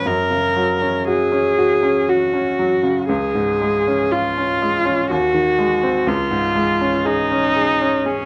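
A rich, focused bowed viola with vibrato and a smooth top sings a melancholic, yearning melody up front from the very start, over bright, polished grand piano accompaniment with short sustain, in a romantic classical excerpt in F# major at a rubato 60 BPM in 3/4, tuned to A4 = 437 Hz, its harmony moving from F# to C# and G#7/D# before settling back on C#, framed by light reverb and the worn, warbly pitch drift of old cassette tape.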